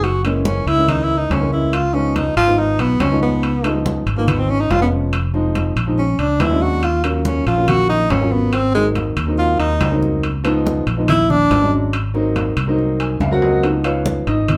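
A subtoned tenor saxophone with vibrato and a soft attack leads this lively, sunny Afro-Cuban jazz excerpt at 141 BPM in Db mixolydian until 11.7 s, over a clear, short-sustained vintage grand piano that adds a fill at 12.8 s, a dark, round and punchy fretless electric bass up front, bright thin-skinned congas in the background, and ringing, saturated metal-shell timbales, with a drum fill at 13.2 s, the band placed in a club reverb and heard from further back in the room.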